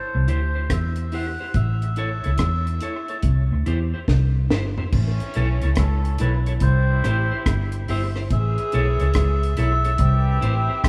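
A reedy, breathy melodica opens this sunny roots reggae excerpt at a relaxed 71 BPM with a swung sixteenth feel, its nasal, tape-echoed line riding over a round, punchy muted bass and a dark, dry drum kit with a high-tuned snare and tight kick, while a clean picked electric guitar with subtle chorus sits low in the mix. After a drum fill, a clear, tight horn section with light vibrato enters at 4.9 seconds as a second line, also touched by tape echo, as the harmony keeps circling between C and A. The rough home-demo sound carries light reverb and a small-room ambience, with the bass and drums up front.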